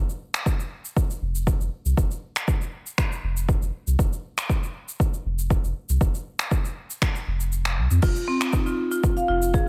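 Warm and driving, this afro house excerpt moves at 119 BPM in a straight 4/4 feel in F minor. A round, sine-like sub bass with a fast attack sits up front from the start, pumping against the sidechain in the low register between F1 and F2. An overdriven electronic kick with a deep, layered punch arrives at 0.5 seconds and stays prominent, while a deep house drum kit adds crash cymbal, finger snaps and shaker at a lower level, both drum parts carrying the grit and roomy character of being re-recorded in a large space. The kick drops out briefly between 7.5 and 8.0 seconds, and at 8.0 seconds a bright marimba struck with hard mallets enters with percussive arpeggios between C4 and F5, colored by analog delay and sidechain pumping. Light reverb and a digital ambience frame the whole piece, which is cut from a longer track.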